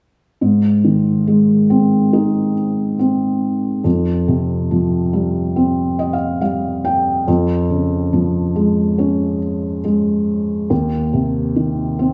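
In a straight 4/4 pulse at a slow 70 BPM, this short pop excerpt in Ab major carries a tender, heartfelt mood. A felt-muted upright piano is the sole instrument, playing accompaniment from 0.4 to 12.1 seconds across a range from Eb2 to G5. Its tone is soft, dark and intimate, with the thick felt giving it a vintage, mellow character that sits up front in the mix. A brief piano fill arrives between 5.6 and 7.3 seconds, just before the harmony moves on. The chords pass from Ab to Fsus2, then Db/F and Cm/Eb, all within a single section. A moderate, lush hall reverb with a 2.3-second decay surrounds the piano.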